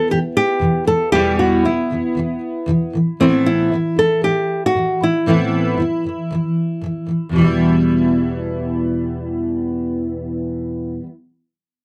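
Acoustic pop with a tender, wistful mood and a gentle swung sixteenth-note feel, in which a small-bodied nylon-string guitar plays an up-front fingerpicked melody until 6.8 seconds over a double-tracked, full-bodied jumbo steel-string guitar, whose fresh strings ring through its fingerpicked accompaniment until 11.1 seconds, all captured in a dry, close 1970s-style studio sound with light reverb.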